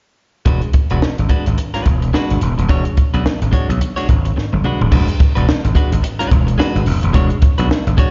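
Swung sixteenths over a steady 4/4 groove give this short, gritty and playful funk clip its bounce, with all three parts entering together at 0.5 seconds on an E9 chord. Up front, a growly, overdriven slap bass punches low beneath a dark, smooth compact cocktail kit with a high-tuned snare and punchy kick, while a clean, compressed, picked electric guitar adds slapback-echoed accompaniment. A drum fill at 4.4 seconds leads into the second section, and the whole performance sounds like a live gig heard through the venue's PA, with a dull top end and a hint of recital-hall reverb.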